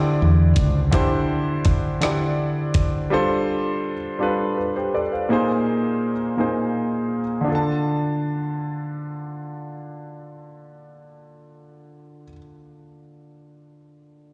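Slow six-eight R&B in D minor at 55 BPM, yearning and late-night, cut from a longer piece and heard as a live gig through the venue's PA with recital hall reverb. A clear, intimate grand piano with audible action noise carries the accompaniment throughout, moving through suspended ninth chords before settling on D minor at 7.5 seconds. Round, punchy fretless electric bass sounds only briefly near the start, and a gritty, compressed sampler-style drum kit with a thumpy kick, hi-hat and rim click plays from 0.6 to 2.9 seconds.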